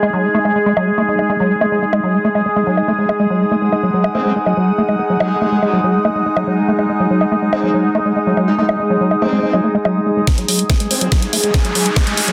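A squelchy, resonant liquid acid bass riff sits up front in this alien, hypnotic psychedelic trance excerpt at 142 BPM, its chorus and delay pumping against a morphing, warbling wavetable pad on sustained G#5 chords and an airy, breathy pad texture, while a drum kit of bongos, filtered hi-hat and a cracking, soft-clipped snare keeps the straight 4/4 moving. A saturated formant-sweep wobble bass joins as a second line at 4.1 seconds with lush chorus and dub echo. At 10.3 seconds a build-up begins, with a drum fill, a filter sweep on the acid bass and a knocking electronic kick, and an electronic riser follows from 10.9 seconds, all set in a moderate digital room and a dense, heavily limited master.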